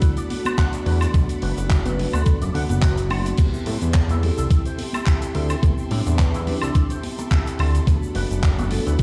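A thumpy, sampler-style electronic kick sits up front in this groovy, sleek nu-disco excerpt, joined by a tight funk kit with handclaps, hi-hat, shaker, woodblock and crash, dry congas in the background, and a fat, detuned sawtooth bass that enters at 0.9 s, while a twangy envelope-filtered guitar riff with chorus and gritty sampler crunch, a bell-like tine electric piano with slapback echo, lush bowed strings pumping under sidechain, and a ringing vibraphone melody with analog delay fill out a big, reverberant room.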